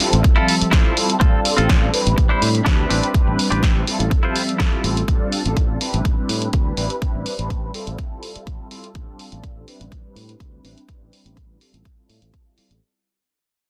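A dense, heavily limited modern master with light reverb carries this nostalgic, sensual slice of filtered disco house, cut from a longer piece and running at 124 BPM in a straight 4/4, tuned to A4 = 438 Hz. A filter sweep and a fade-out run across the whole 12.8 seconds. A punchy, tape-warm electronic kick sits up front, re-recorded in a large room, while an analog drum machine supplies hi-hat and a snare that both pump with sidechain. A bright, fingered electric bass, also sidechained and low-pass filtered, holds the low end from A1 to A2. Detuned sawtooth synth brass, round and dark through chorus, phaser, cassette-tape colour and a low-pass filter, sustains the chords cycling through Fmaj7, G9sus4/A, Cmaj9/A and Am11. A clean, twangy, direct-recorded guitar riff picks along only until 4.8 seconds, and a barely audible downlifter slips by at the very start.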